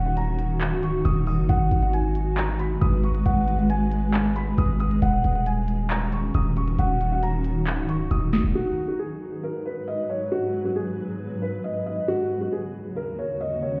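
A felt-muted upright piano and a cloudy granular pad open this melancholic, hard-hitting trap excerpt, the piano's soft, intimate melody trailed by tape echo over the pad's blurred, detuned sustained chords that carry their own reverb. A heavy, punchy 808-style bass with a fast attack and a noise layer sits up front from the start, and an electronic trap kit with a sharp snare, crisp hi-hats and handclaps joins at 0.2 seconds in a half-time feel. The harmony moves between D#m7 and G#m7, giving the piece a brooding, unresolved cast. A drum fill arrives at 8.1 seconds, after which the bass and drums drop away and the piano and evolving pad carry the closing section alone. The whole mix sounds muffled, as if heard through a wall, with a stone room reverb lending a cold, enclosed space.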